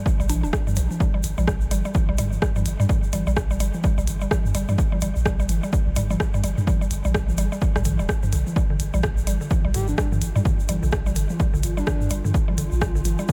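Minimal techno in G minor at 127 BPM, this clinical, sparse excerpt rides a swung 16th-note feel over a single Gm7 chord. A punchy, tape-warm electronic kick sits up front, joined by a deep sub bass with a pitch-drop attack and sidechain pumping, while a minimal click drum kit adds overdriven, clicky hi-hats and rim clicks. Electronic toms, re-recorded in a large room with analog delay, stay in the background, and a grainy, bright tube shaker adds a faint acoustic layer. A woody, round mallet-like synth pluck carries the riff from the start, colored by chorus, cassette tape character, tape echo and sidechain pumping. At 9.7 seconds a swarming, tense drone and a breathy flute-like synth lead with vibrato and analog delay enter softly in the background, the lead stopping at 12.1 seconds. The overall sound is dry, with little reverb.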